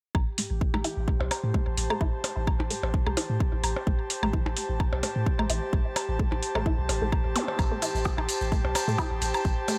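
Lightly reverberant digital ambience frames this hypnotic, clinical minimal techno excerpt in A minor at 129 BPM with a 16th-note swing, where an up-front layered kick and a dry analog drum machine with metallic hi-hats and rim clicks play alongside a deep, sidechain-pumped sine sub bass with a pitch-drop attack, while tape-warm percussion blips echo through digital delay, an airy, breathy chorused pad sustains on an Am7 chord, a squelchy, resonant pluck riff runs through phaser and delay as a filter sweep moves across a synth arpeggio sound, a brief electronic zap sounds at 7.4 s, and grainy, distant maracas enter at 7.6 s.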